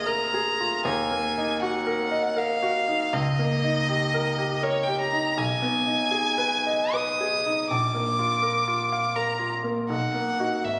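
A rich, focused violin sings a solemn, melancholic melody with vibrato over a bright concert grand piano with deep bass, both up front from the start in a romantic classical duo in a rubato 3/4, captured on a phone in a concert hall with moderate reverb in this 10.8-second fragment cut from a longer piece.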